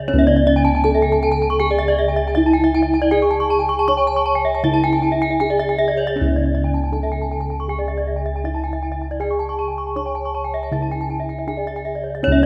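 A bronze metallophone opens the excerpt together with a second metallophone's arpeggios and the low tones of bossed gongs, setting a brilliant, shimmering mood in a Balinese gamelan style at 79 BPM in 4/4, in C# pelog. The lead metallophone carries the melody between C#4 and C#5. It is struck with padded disc mallets for a mellow, soft tone that sits in a boxy small-room sound. Above it, a metallophone played with a horn mallet spins arpeggios from C#5 to C#6, its tone bright and up front. A second arpeggio part in the same register joins at 0.2 s with an airy, ringing quality. All three metallophones use paired tuning, which gives their notes shimmering beats. Beneath them the bossed gongs supply a round, beating bass that reaches down to C#2 and sits forward in the mix. A moderate concert-hall reverb with a 1.9-second decay holds the whole 12.5-second excerpt, which is cut from a longer piece.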